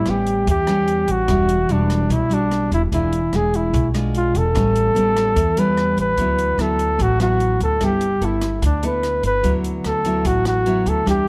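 A straight bossa nova groove in 4/4 sets a breezy, sunny mood, with an open jazz drum kit of boomy kick, hi-hat and rim click sitting dark and rolled-off beneath a woody pizzicato upright bass and a full-bodied, fingerpicked classical nylon-string guitar moving through chords such as Em9, E7b9 and D69, while an up-front breathy flugelhorn carries the melody with mellow vibrato, soft attacks and scooped notes inside a moderate large studio reverb in this short excerpt from a longer piece.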